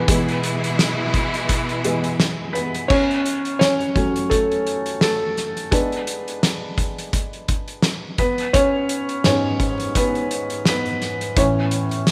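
A moderate plate reverb surrounds this short cut from a longer piano-driven pop piece in F# minor, moving at 85 BPM with a lightly swung 16th feel and an earnest, driving mood. A soft, felt-muted upright piano sits up front with mellow, intimate tone and audible action noise, carrying the lead from start to finish over a loose, acoustic indie drum kit with a fat snare, punchy kick and dark cymbals. A clear, focused studio string section holds bowed, vibrato-rich chords only until 2.9 seconds, as the harmony moves from E through F#m and G#dim to A by 11.4 seconds.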